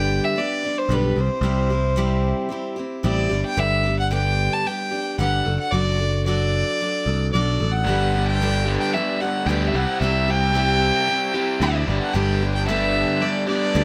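Set in a light reverb, this hopeful, open-road excerpt of folk rock and heartland rock opens with a reedy, gut-toned fiddle carrying the melody over a bright, full-bodied picked steel-string acoustic guitar and a growly, punchy picked electric bass, all up front in the mix. At 7.8 seconds a raw garage guitar enters with an overdriven, double-tracked riff as the chords move between G, C and D/F# in a straight 4/4 feel.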